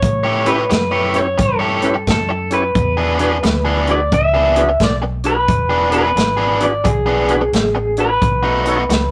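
A rough, tube-saturated rehearsal-room sound with light reverb frames this laid-back, rollicking electric blues shuffle cut from a longer piece, where a slightly broken-up, lo-fi electric guitar through a small old amp carries the melody over a bright, overdriven picked guitar riff, a thick tonewheel organ with slow rotary speaker and overdrive, a dark, round foam-muted fingered bass, and an up-front vintage drum kit of punchy kick, medium-tuned snare and hi-hat with a rolled-off top, as the harmony moves from A7 to E7 and reaches B7 at 8.2 seconds.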